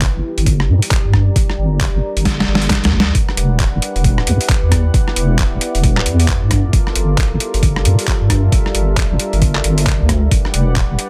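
A deep, wobbling bass with chorus sits up front over a gritty, pitched-down sampler-style kit of handclaps, hi-hat, rim click and snare, plus a thumpy overdriven electronic kick, all swinging at 134 BPM in a moody, soulful two-step UK garage groove, while a dark ambient pad with built-in reverb pumps in the background; after a drum fill from 2.3 to 3.1 seconds, a smooth, warbling vintage analog pad enters at 3.1 seconds with sidechain-pumped sustained chords moving from Em9 through Gm9 and back to Em9, all in a dry, dense, heavily limited mix.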